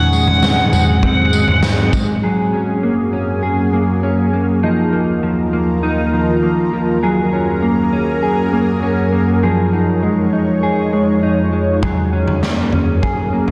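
Dream pop at 100 BPM in Gb lydian, ethereal and floating, where an airy, detuned pad with ensemble chorus and a slow attack holds sustained chords throughout the 13.5 seconds under dark, clean electric guitar arpeggios washed in analog chorus and delay, while an overdriven slide guitar sings a brief Gb5 melody through digital delay until 1.6 s and a gritty, saturated garage drum kit with punchy kick, tambourine and toms plays from 0.1 to 2.1 s and returns at 11.8 s, all set in a wet concert hall reverb with a dense, heavily limited modern master over chords moving from Ab7 through Gbadd9, Ebsus2 and Dbadd9/F.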